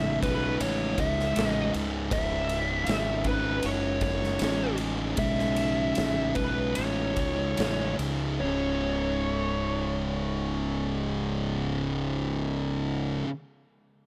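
In a straight 4/4 that slows from 2.1 s, this heavy, sludgy stoner and doom metal fragment, cut from a longer piece, is built on a thick, double-tracked fuzz guitar riff sitting up front, a growly, overdriven fingered electric bass, and a dark lead guitar melody soaked in wah and digital delay, while a punchy, acoustic big rock drum kit of kick, snare and ride in a bright stone room drops out at 8.2 s as the harmony settles from C#m onto a C#5 power chord.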